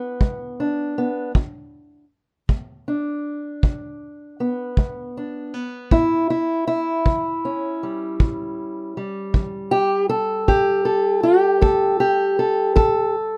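Acoustic country blues with a rollicking, soulful mood, this short excerpt moves at a slow 53 BPM in a straight 12/8 and is cut from a longer piece. A fingerpicked steel-string acoustic guitar carries the melody from 0.0 s, its dark, boxy parlour tone sitting up front, with finger squeaks audible as it ranges from E2 to A4. A kick drum joins at 0.2 s, tight and smooth with a rolled-off top and a small-room sound, played with brushes and also placed up front. The harmony rests on E7 before moving to A7 at 5.9 s. Light reverb and a rough home-demo mix give the recording an unpolished character.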